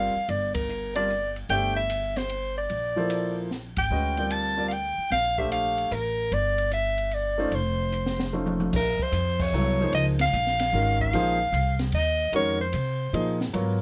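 Modal jazz in a searching, hypnotic 3/4 swing at 149 BPM, moving from G dorian on a Gm9 chord through F7b13 into Bb minor at 8.7 s. Throughout, a mellow, lightly vibratoed soprano saxophone leads with a punchy, distant, roomy tone over a clear concert grand piano with deep bass, a woody pizzicato upright bass on steel strings, and an acoustic jazz drum kit with dark cymbals, a high-tuned snare and a boomy kick that adds fills around 3.5 s and 7.9 s between band accents, all under light reverb in this short cut from a longer piece.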